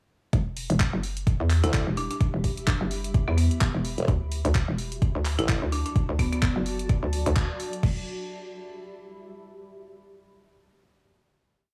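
Bouncy and gritty, this complete bass house piece runs at 128 BPM in E minor with a swung 16th-note feel, moving from Em to D and back to Em. From 0.3 seconds a punchy, tape-warm electronic kick drives a four-on-the-floor pulse alongside a house kit of closed and open hi-hats, claps and crash, both re-recorded in a large room. Up front, a hollow, knocking FM bass plays chopped phrases with overdrive and sidechain pumping, joined at 1.6 seconds by a sawtooth-and-sine wobble bass whose formant filter, chorus and tube saturation shape modulated phrases with changing wobble speed that answer the other bass. A woody, buzzing marimba struck with hard mallets adds dry, band-limited short answering phrases through a dub echo, while a dark, cloudy granular pad with built-in reverb slowly shifts chords around it all. After a band accent at 7.4 seconds, the drop gives way to a final chord where the FM bass lingers briefly until 8.1 seconds and the blurred pad rings on until 9.7 seconds, in an otherwise close, studio-dry sound.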